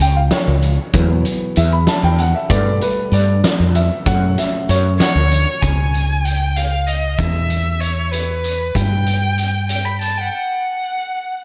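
Progressive instrumental band music in a driving, tense 5/8, where a dark, mellow grand piano carries the accompaniment until 5.6 s over a round fretless electric bass with ensemble chorus and an oversized, low-tuned acoustic drum kit with a fat snare, a punchy kick and a gritty, saturated tone, while a rich, focused bowed violin with vibrato and tape echo takes the melody from 5.0 s, the whole dreamy mix soaked in lush hall reverb before a brief break at 10.3 s in this cut from a longer piece.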